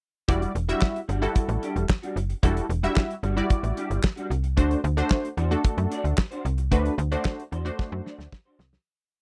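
A four-on-the-floor boogie beat at 112 BPM in 4/4 drives this short, late-night, danceable piece of early-eighties boogie funk in E minor, played by a damped 70s drum kit with a tight kick, a fat snare layered with handclaps, hi-hat and a rolled-off top. Up front, a slap-like FM bass with a snappy, metallic attack plays a syncopated line with slides, while a punchy polysynth, sawtooth and detuned with a filter pluck and chorus, pushes drop2 chord voicings from Em9 to D7 at 4.6 seconds. A twangy, slightly broken-up electric guitar through a small old amp adds a choppy sixteenth-note riff, all in a dry, close 1970s-style room, before a fade-out from 6.7 seconds and a drum fill at 7.8 seconds.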